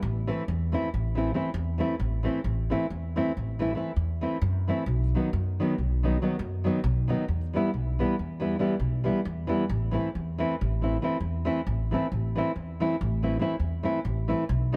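A woody, pizzicato upright bass on steel strings opens this restless, virtuosic excerpt of Balkan wedding-band folk at 274 BPM in 11/8, joined at 0.3 seconds by a dark, thumb-plucked classical nylon-string guitar, both up front and captured closely and in detail in light reverb as the A dorian sharp-four harmony moves from Am through B and Em back to Am.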